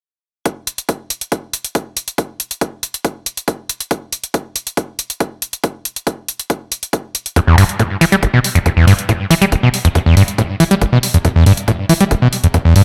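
A light reverb hangs over this dark, relentless cut of driving peak-time techno, taken from a longer piece and pushing forward at 139 BPM in a straight 4/4 in E minor. From 0.5 seconds, a heavy, layered electronic kick drum sits up front, its tape-warm tone re-recorded in a small room and trimmed by high-pass filtering on both the kick and its room sound. Alongside it, a layered electronic hi-hat adds warm, tape-warm hats with the same small-room character, running through to the end. At 7.4 seconds a screaming acid line bursts in up front, ranging from E1 to G3. It is squelchy and aggressive, with a resonant sawtooth, a filter sweep, a fast attack and a decaying tail. Distortion, chorus, sidechain pumping and digital delay thicken this riff into the most forceful element of the track.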